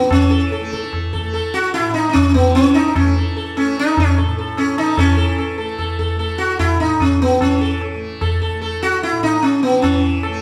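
Up front in the mix, a plectrum-plucked acoustic sitar carries the melody between B3 and A4, its buzzing tone ringing with sympathetic strings. This is a devotional, radiant Hindustani classical performance in raga yaman on A, moving at 148 BPM in a straight 3/4. Beneath it, a softly plucked tanpura holds a bright, shimmering drone from A2 to A3, sitting well back from the lead. A low-tuned tabla, heard close and with a short ring, supplies the percussion throughout the 10.4 seconds, cut from a longer piece. The trio plays live together in a stone room whose reverb gives the sound a wet, resonant space, and at 5.0 s the same opening passage comes around again.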